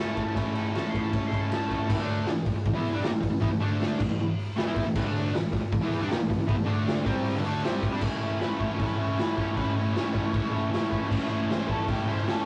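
Rowdy and swaggering, this short garage rock cut drives along at 156 BPM in A major, led by a crunchy, double-tracked overdriven guitar riff up front over a punchy, up-front acoustic drum kit of kick, medium-tuned snare, hi-hat, ride and crash. A dark octave-fuzz lead guitar sits in the background, playing its melody briefly at the start and returning at 8.4 seconds, while the chords move through A, A5, D5 and Gsus24. The sound is a rough rehearsal-room recording with cassette tape saturation and a wet booth ambience.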